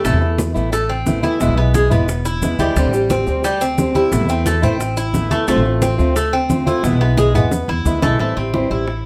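A lightly reverberant, close-miked sound frames this sultry Cuban son and guajira excerpt, where a fingerpicked archtop guitar, a metallic, double-strung tres playing arpeggios and a growly, woody pizzicato upright bass sit up front over low-tuned congas and round bongos in the background, grainy maracas from 0.1 to 8.2 seconds, and a drum fill at 7.2 seconds, as the chords move from Amadd9 through E, D7sus4 and Dm7 to settle on Am7.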